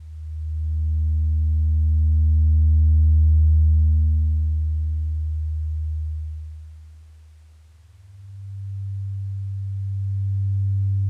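Melancholic and spacious, this ambient fragment in free time features a solo round analog bass, deep, dark and wave-folded with a fast attack and long sustain, sitting up front between Eb2 and G2 inside a huge wet reverb with a 7.3-second decay, before shifting into a new section at 7.1 seconds and running to 11.1 seconds.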